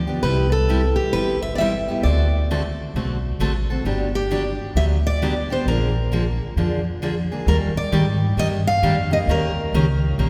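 A bright, fresh-stringed picked steel-string guitar carries the melody over a dark, woody, pizzicato upright bass with a thumpy gut-string tone, opening this playful, charming snippet of acoustic string swing at 132 BPM with a lilting swung feel. A full-bodied jumbo steel-string guitar supplies the accompaniment, its finger squeaks audible, through changes such as Cmaj7, D7 and Gmaj7 before a new passage on Ebmaj7 arrives at 7.5 seconds. All three parts sit up front, bathed in the long, wet reverb of a church.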